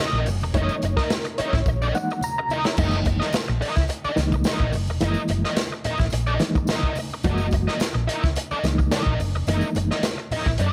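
Playful, strutting funk at 108 BPM in F# mixolydian, where a worn, slightly out-of-tune reed electric piano with tremolo and light overdrive solos over an F#13 chord before settling into stabs, alongside an overdriven guitar with wah, a round, punchy hollow-body bass, a gritty, saturated breakbeat kit with dark cymbals that plays a fill from 1.7 to 2.8 seconds, soft low-tuned congas, a jingly tambourine, and a lush vintage string machine that drops out at 2.7 seconds, all under light reverb in this short excerpt.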